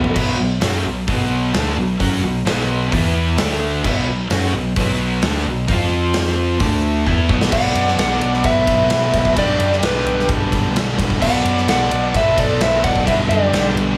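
Driving and menacing, this hard rock excerpt in B minor charges along at 130 BPM in 4/4. It opens with crunchy overdriven and bright high-gain double-tracked guitar riffs over a growly overdriven bass and a punchy gated 80s drum kit in a bright stone room. After a drum fill at 7.1 seconds, a dark, slightly broken-up lead guitar melody enters at 7.5 seconds alongside an octave-fuzz second line with tape echo, and the harmony shifts between Bm and G/B under light small-room reverb.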